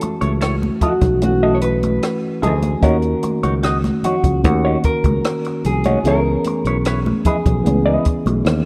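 An excerpt of lush, smooth 1970s-style soul at 75 BPM opens with a dark, mellow electric guitar melody over a worn, slightly out-of-tune tine electric piano, a slightly broken-up wah guitar riff through a small old amp, a dry compact cocktail kit with a punchy kick, hi-hat and rim click, and bright, high-tuned congas in the background, while a growly fingered electric bass sits up front from 0.2 seconds, all moving through F#m7, D#m7 and C#m7 in a rough home demo mix with light studio reverb.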